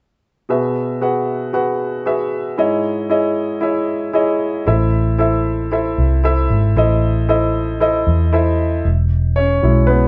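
Warm and hopeful, this pop excerpt in E major moves at 115 BPM in 4/4 with a light sixteenth-note swing, as a polished, present grand piano opens the accompaniment at 0.5 seconds over Eadd9 and C#madd9 chords, a dark, round, punchy foam-muted vintage electric bass joins up front at 4.7 seconds as the harmony turns to A minor, and the piano takes a solo over the bass at 8.8 seconds back on Eadd9, all captured as a band playing together in one room with moderate studio reverb and a softened top end.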